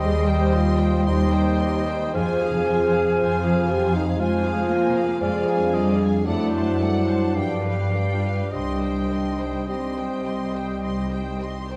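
A yearning, elegiac slow romantic movement for symphony orchestra in C minor, cut from a longer piece, moves in a rubato 3/4 at 51-60 BPM as a lush, vibrato-rich first violin section sings the melody over darker, distant second violins, a mellow clarinet, cor anglais and airy silver flute, a background bassoon and smooth violas, sustained mellow French horn chords, ringing background harp arpeggios, and a bass of focused double basses and cellos with portamento, all bathed in a wet scoring-stage reverb as the harmony passes from Cm/Eb through Fm and G7 to a Cm close at 8.5 seconds.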